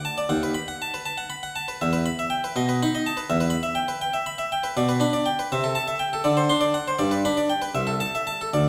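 Classical, baroque-style suite movement for solo harpsichord, serene and flowing in 6/8 with a rubato feel, captured as a brief fragment of a longer piece. The French-style harpsichord, on a single set of strings, sits up front with a bright, full, plucked tone, close-miked and dry at the source, spanning from deep bass to high treble. It is heard within a reverberant recital hall carrying a faint mains hum, and the harmony shifts to a new tonal centre at about 4.8 seconds.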